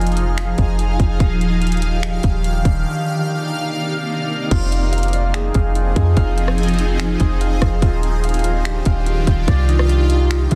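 Ethereal and spacious, this atmospheric cloud-rap fragment at 145 BPM in a half-time 4/4 feel sets a shimmering, phased ambient pad with chorus and built-in reverb over a deep, round 808-style bass and a gritty 12-bit trap kit of hard-clipped kick, metallic hats, finger snaps, rim clicks and crash, while a mellow concert harp enters at 4.5 seconds with ringing arpeggios through tape echo, all cycling through Fm7, Ebmaj9 and Cm11 in a dense, heavily limited modern master.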